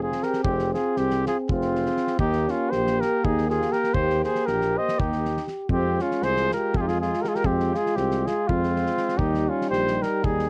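Balkan brass band folk in a restless, fiery 7/8 at 240 BPM in F minor, where an up-front mellow trumpet with light vibrato carries the melody over a distant, roomy flugelhorn second line, a clear euphonium in the background, a very quiet French horn in the accompaniment and a breathy tuba bass, while a muffled, gritty, lo-fi drum kit with a fat snare and tight kick sits under the Fm and Eb changes in this dry, close, 1970s-style studio excerpt.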